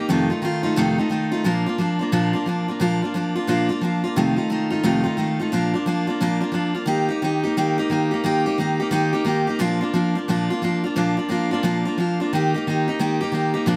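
Swung eighths in 4/4 drive this rowdy, rollicking rock fragment, where a lone picked steel-string acoustic guitar with a full-bodied dreadnought voice sits up front in a moderate echo-chamber reverb, rocking between F7 and Bb before the second section at 6.9 seconds swings over to Eb and back to Bb.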